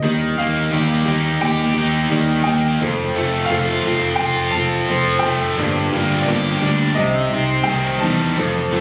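Wistful and reflective, this 8.8-second cut from a longer folk rock and heartland rock piece moves at 86 BPM in a straight 4/4, with a clear baby grand piano carrying the melody high above a boxy picked ladder-braced acoustic guitar with finger squeak, a bright overdriven double-tracked stack guitar riff sitting up front, and a round, punchy fingered electric bass, all heard as if caught on a phone in a club-like room with compression, over chords moving from Eb to F, Gm7 and Cm.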